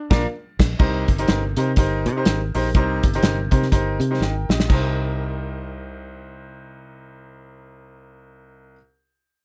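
Passionate and driving, this short cut from a longer piece is uptempo 1960s-style soul with a swung feel. It opens on a band accent over a Bb chord before settling onto Cm7. A fingered electric bass sits up front with a foam-muted, punchy tone, while a clear grand piano carries the accompaniment with a touch of tube saturation. An acoustic soul drum kit with a tight kick, medium-tuned snare and dark cymbals, including china and crash, plays a fill from 4.2 seconds and drops out at 4.8 seconds. Piano and bass then carry the second section on their own in a dry, close sound.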